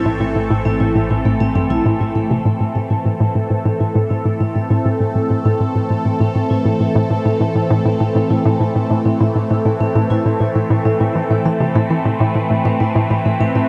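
A straight 4/4 pulse at 100 BPM drives this hypnotic, expansive piece of sequencer-driven space music in A minor, resting on a single A minor chord. Up front, a hollow, bouncy square-wave pluck with a fast attack, short decay and a noise layer repeats a low riff through chorus and delay. Beside it, a bright, swirling analog pad of detuned sawtooths sustains chords with a soft attack and long release, colored by phaser and chorus. A fat, tube-saturated analog bass holds a low A only until 2.4 seconds, while a filter sweep on the synth arpeggio sound opens the first 2.5 seconds. From there the vibraphone, played with medium mallets and set in the background, fades in with metallic, ringing arpeggios, slow motor vibrato and delay. This cut from a longer piece is bathed in an enormous, wet reverb with a long tail and a cassette-tape coloring.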